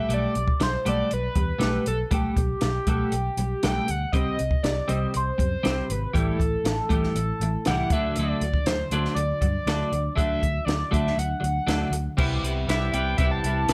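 An overdriven synth lead carries the melody from the start, a gritty, screaming sawtooth and square-wave tone with a fast attack, sustained notes and vibrato, treated with distortion, chorus, phaser and slapback echo and placed up front. This wistful, jangly indie rock passage is cut from a longer piece and moves at 119 BPM in a straight 4/4, in G major. A bright, twangy twelve-string electric guitar plays a clean, picked, compressed riff bathed in lush chorus, while a fingered electric bass adds a round, amped low end. A compact cocktail drum kit, dark and smooth with a high-tuned snare and punchy kick, sits close in a small room, its crash, hi-hat, kick and snare heard with a rolled-off top. The harmony passes through Gadd9/B, Cm and Dadd9 before reaching Cmaj7 at 12.2 s, where an analog synth lead takes a short solo until the recording ends at 13.7 s, with a studio reverb around the whole mix.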